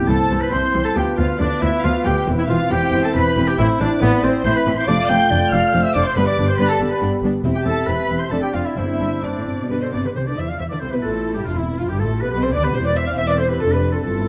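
A lush violin section carries the melody with vibrato and portamento, expressive and set at a distance, in this quick, graceful classical-period movement for symphony orchestra in C major, moving in a rubato 3/4 at 138 BPM. A second violin section, close-miked and tucked in the background, joins the airy, hollow concert flute, a punchy, roomy oboe and a mellow clarinet in second lines alongside the tune. Dark, tight French horns hold sustained chords, while a clear trumpet section adds background stabs until 9.7 seconds. Violas fill in the accompaniment, and cellos and double basses give a focused, even bass, all bowed with vibrato. Very quiet timpani with soft mallets and a round tone touch in briefly at the start and around 6.2 seconds, then return from 8.8 seconds. The cheerful fragment, cut from a longer piece, sits in a moderate concert hall reverb with close, detailed microphones and a vinyl crackle, and it shifts into a new section at 10.2 seconds.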